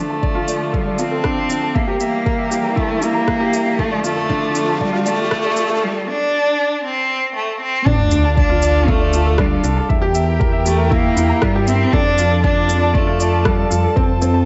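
A bowed cello sings an expressive melody with vibrato and portamento from the start, set up front yet sounding distant, over a muted string quartet holding veiled, con sordino chords that pump with a sidechain and a worn, woody, slightly detuned upright piano riff trailing a delay. This intimate, moving piano-and-strings electronica piece moves at 118 BPM in D minor. A deep, layered, overdriven kick and a gritty electronic shaker and rim click enter almost at once. A filter sweep builds for the opening stretch, with a very quiet riser and sub drop from 3.6 seconds. At 7.9 seconds the music drops with an impact, and a dark, rumbling detuned saw bass, beating and sustained, arrives and pumps along with the quartet. The moderate recital hall reverb and small room ambience give the mix a chamber-like space, and the top end is rolled off above 7.8 kHz, keeping the sound soft-edged in this excerpt from a longer piece.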